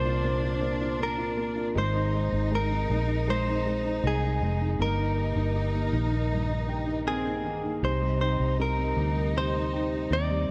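Tender and hopeful, this pop ballad moves at a straight 79 BPM in 4/4 through Bbadd9, Abadd9, Eb/G and Cmadd9, with every part playing from 0.0 to 10.5 seconds of a passage cut from a longer piece. A bright, compressed clean electric guitar, recorded direct and picked, carries the melody up front, while a rich, smooth symphonic cello section bowed with vibrato supplies a second line beneath it. An intimate, woody upright piano with audible action noise and long sustain provides accompaniment, a very quiet thumb-plucked nylon-string guitar adds dark arpeggios, and a round, foam-muted vintage electric bass sits up front, all within a small room's light reverb and a dark, warm production.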